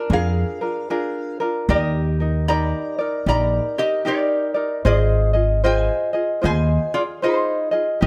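Hawaiian music at a languid, dreamy 76 BPM in a swung 4/4, where a metallic, nasal lap resonator guitar carries the slide melody with fingerpicks over a light, fingerpicked tenor ukulele and a dark, woody, thumpy pizzicato upright bass on gut strings, the ukulele and bass sitting up front as the chords move through Bb7, Ebmaj7 and Ab6, all captured with close, detailed microphones and light reverb in this 8.1-second excerpt cut from a longer piece.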